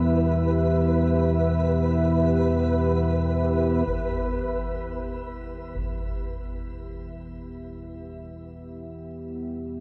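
A rumbling, up-front drone anchors this ominous dark ambient drone excerpt, joined by a moody, warbling vintage pad with chorus and shimmer reverb and a grainy, flickering granular texture that plays until 3.9 seconds, when a close, low-pass-filtered acoustic concert bass drum sounds until 5.9 seconds, all in a huge, wet reverb space.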